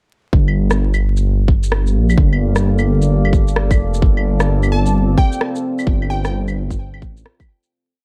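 A swung, shuffled two-step groove drives this short, complete future garage piece, with a tight, muffled kick sitting up front from 0.3 seconds and a skittering layer of claves, rim clicks and shaker joining just after. Beneath it, a rumbling detuned sawtooth bass holds long gliding notes, its beating unison tone giving the low end real weight. From 1.8 seconds a deep, moody pad drifts in on a slow attack, carrying slowly shifting minor chords through chorus, its own reverb and sidechain pumping. Near 4.7 seconds a glassy wavetable pluck adds brief, crystalline answering phrases high in the register, shaped by a filter sweep and colored with chorus and tape echo. The mood is rainy and melancholic, set in a digital ambience with dark, warm production and vinyl crackle, and the piece fades out over its closing seconds.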